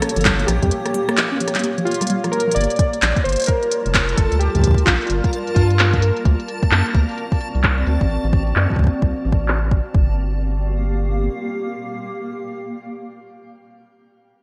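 A swung 16th-note groove of deep electronic kick, handclaps, smooth hi-hats and rim clicks, with the drums filter-swept from 2.6 s, drives this melancholic, intricate IDM fragment, where a round, dark analog bass sits up front beneath a brief nostalgic melody on warbling lo-fi synth keys, a nasal, detuned pluck arpeggio that stops at 2.6 s, a cloudy granular pad holding evolving chords, and a dreamy reversed texture that enters at 3.7 s, all within a lush hall ambience and bright 1980s-style digital sheen.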